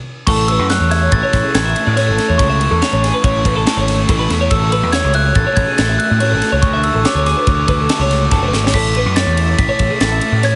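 Bell-like glockenspiel struck with rubber mallets carries a ringing melody through digital delay, entering together at 0.3 seconds with a twangy twelve-string electric guitar picking tremolo-treated arpeggios, a raw, double-tracked garage guitar riff with overdrive, and a growling, up-front picked bass. This intricate, bright slice of math rock and midwest emo moves in a straight 5/4 through Amaj7, F#m7/A, Dmaj7 and A, driven by a crisp fusion kit with a high-tuned snare, tight kick, crash and ride, which plays a fill at 8.5 seconds. Light reverb sits over a heavily compressed, radio-like sound with its top end capped at 11.0 kHz, and the piece is cut from a longer recording.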